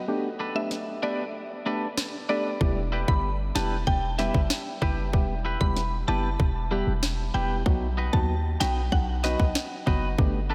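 Dancehall at 95 BPM in E minor with a tough, sultry mood, where a hollow, wave-folded organ stab with chorus, twangy clean electric guitar arpeggios, and a woody FM mallet pluck melody carrying chorus and analog delay open, soon joined by an electronic drum kit with a tight kick, rim clicks and a sharp snare, until a boomy 808-style bass arrives at 2.6 s as the Gadd9 break gives way to Em, all bathed in a dreamy cathedral reverb in this short cut from a longer piece.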